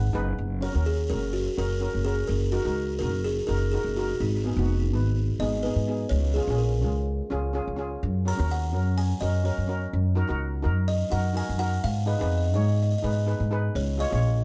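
Carefree and bouncy, this calypso excerpt rests on an up-front upright bass played pizzicato, its gut strings giving a dark, thumpy tone. A shimmering, metallic steel pan struck with rubber sticks fills in the harmony, while a buzzing kalimba with a mellow, airy, woody board sound carries the melody as a solo from 0.6 seconds onward. The chords move from D#m7/F# through G#m, C# and F# to a closing C#add9, all in light reverb.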